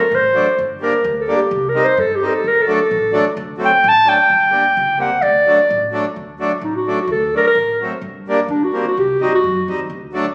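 A dark, smooth-topped clarinet in classical style opens this bittersweet, festive klezmer excerpt at 129 BPM in 2/4 and D phrygian dominant, carrying a featured solo up front until 6.2 seconds while a reedy, full accordion with dry tuning and a quieter, woody pizzicato upright bass on steel strings fill in beneath, all heard through a phone recording in a moderately reverberant recital hall with added club reverb and compression.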